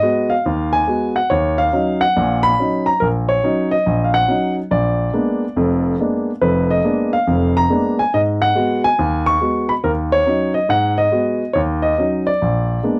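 A warm grand piano plays alone from the first second, swinging at 141 BPM in a moody Eb minor that moves through Abm7, Ebm7 and a tense Bb7b9 across the 13-second excerpt cut from a longer piece. The piano sits up front and intimate, its action noise audible, with a natural tone reaching from deep bass to bright upper notes. The dry, close sound of a 1970s-style studio, with little reverb, puts the listener almost at the keyboard.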